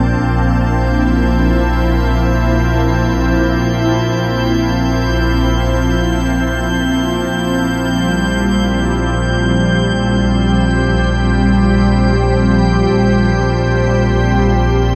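Ambient music in free time, luminous and peaceful, with a soft organ-like pad holding sustained chords that move from Bbmaj9 to Fsus2/Bb at 7.3 seconds, its pure, detuned tone thickened by ensemble chorus and set up front. Beneath it a clear studio double bass section sustains a low bowed note with light vibrato and an earthy, close presence, while a glassy texture of drifting overtones floats high above with chorus. The whole short excerpt sits in a huge, wet reverb that gives the dark production a warm, enveloping glow.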